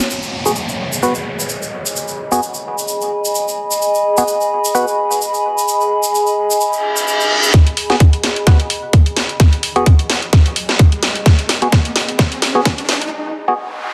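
Bass house with a gritty, swaggering mood, this short cut from a longer piece opens on a warbling, nostalgic pad with a lo-fi, detuned quality, pumping against the beat under chorus and its own reverb, alongside a grainy acoustic tube shaker. A hollow, nasal organ stab with fast, decaying hits sits over a G#m7 chord, coloured by chorus, cassette tape character and dub echo, while a filter sweep runs across it through the opening section. A reverse cymbal leads into the second half at 7.5 seconds, where a tight, up-front electronic kick and a garage kit with a cracking snare and bright hats arrive together, both carrying studio reverb. That second section is a build-up with a drum fill, a filter sweep and a riser from the electronic effects layer, before a brief break and noise sweep from 13.1 seconds. The sound is dense and heavily limited, set in a moderate plate reverb with a digital ambience.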